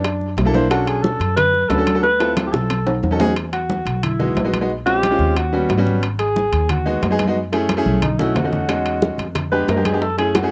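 Dry, open-air sound places a breathy alto saxophone and a bright, brilliant upright piano up front in this sunny, danceable Afro-Cuban jazz excerpt, with the piano joining at 0.5 s. The sax plays with a subtoned, scooped jazz phrasing and moves into a solo after the opening, over woody pizzicato upright bass and piano accompaniment, with harmony rich in sevenths and extended chords. In the background, compressed, saturated congas with hard hands carry a slapback echo, ringing metal-shell timbales sit in a band-limited vintage tone, and round, low-tuned bongos drop out at 3.3 s and return at 8.7 s.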